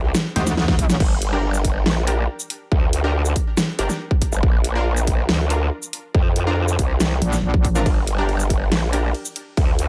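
A half-time 4/4 pulse at 140 BPM drives this chaotic, menacing slice of heavy wobble dubstep in G minor, cut from a longer piece. A dubstep kit with a huge snare, bright hats, crash and ride cymbals and shaker opens the groove and is soon joined by an overdriven electronic kick punching up front, and a drum fill crashes in between 0.4 and 1.0 seconds. A growling, formant-filtered bass runs throughout, saturated, chorused and aggressive, while a metallic FM wobble bass cuts in for short bursts at 0.4 and again at 7.2 seconds. Above them, a bold orchestra-hit-like synth stab built from detuned sawtooth unison with a noise layer fires short, plucky hits, trailed by reverb and delay. The harmony moves from C minor to G minor, then to B-flat and back to G minor, all set in a digital ambience.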